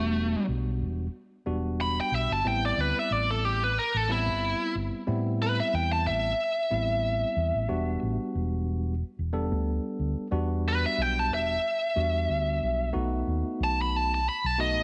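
Straight-eighth soul blues in E minor at 91 BPM, this brooding, smoky passage is cut from a longer piece and runs just under 15 seconds. A biting lead guitar carries the melody as a solo throughout, its bright, overdriven, picked tone sitting up front and reaching from A3 to B5. Beneath it, a tine electric piano supplies clean, direct accompaniment in a narrow middle range, while a fingered electric bass sounds dark, round and amped, also placed up front. The harmony moves from Em9 to Am9 at 2.4 seconds, returns to Em9, and turns to B7 at 12.9 seconds. A moderate echo chamber reverb gives the parts a roomy, lingering tail, and a light 16th-note swing loosens the straight-eighth groove.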